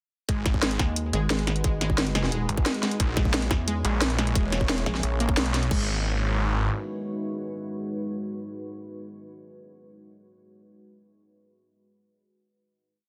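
A dense, heavily limited modern master in a digital ambience carries this dark, futuristic piece of technical drum and bass in G# minor at 177 BPM, which opens at 0.3 s straight into a drop over G#m7 and A#dim. Up-front electronic drums set a tight kick against a cracking snare, hi-hat and crash. A snarling, detuned sawtooth bass with distortion and tube saturation throws chopped phrases, answered by a metallic FM wobble bass with chorus whose wobble speed keeps changing, while a lush unison pluck cycles a 3-step arpeggio loop drifting against the bar through cassette tape and dub echo. A deep, moody pad with chorus and reverb swells in slowly beneath everything with sidechain pumping and rings on into the final chord from 5.7 s to 8.4 s.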